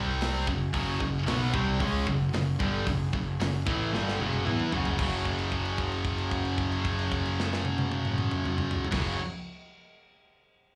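A live club recording with small-room ambience and little reverb, captured through the venue's PA, opens this aggressive, relentless heavy metal excerpt in F# minor at 113 BPM in a straight 4/4. Three picked electric guitars drive the riff across the same F#2 to E4 range: an up-front, high-gain guitar with heavy distortion, a very quiet, tight distorted guitar beneath it, and a crunchy, double-tracked overdriven guitar with slapback echo that joins at 0.7 seconds from the background. A punchy, fuzzy picked bass, overdriven and sounding both direct and amped, holds down the low end between F#1 and E2. The tight acoustic drum kit enters at 0.2 seconds with a mid-forward studio-room sound, bright crash and hi-hat, a medium-tuned snare, a tight kick and toms. After a drum fill from 3.9 seconds, the harmony moves from F#m to F#5 at 5.0 seconds, where a held note rings until 8.9 seconds, shortly before the excerpt is cut off.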